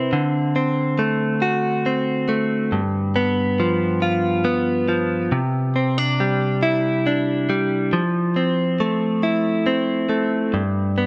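A direct-recorded clean electric guitar carries this short pop fragment entirely on its own, playing from the first moment to the close at 11.1 seconds. The mood is romantic and tender, moving in a slow 6/8 at 46 beats per minute with a straight feel, in C major and tuned slightly low to A4 = 439 Hz. The picked guitar sounds clean and compressed, sitting up front with a light reverb around it, and its range runs from G2 up to B4. The harmony travels through D7, G7, Cadd9 and Fmaj7 before settling on G at 10.5 seconds, a progression that gives the passage a gentle, searching quality. Cut from a longer piece, it plays as a single intimate section.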